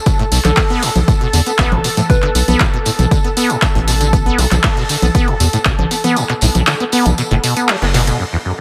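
Set in a light reverb, this is a gritty, hypnotic slice of acid house cut from a longer piece, moving at 118 BPM in a straight 4/4 and tuned to A4 = 439 Hz. A squelchy, resonant sawtooth acid bass carries the riff with a filter sweep, fast-decaying notes, chorus, tape echo and sidechain pumping. Beneath it, a round, deep square-and-sine bass adds tube saturation and its own pumping. An overdriven analog kick punches at the front until 5.8 s. It is joined by an overdriven drum machine of congas, handclaps, hi-hat and tambourine with low-pass filtering on the hats and percussion. A very quiet acoustic kit of hi-hat, snare and tambourine adds a mid-forward, rolled-off studio-room tone. Alongside them, a thick, warbling, detuned unison pad holds sustained chords with chorus and sidechain pumping. A gentle, keys-like FM lead appears in the background between 0.4 and 2.5 s, its struck notes coloured by chorus and tape echo.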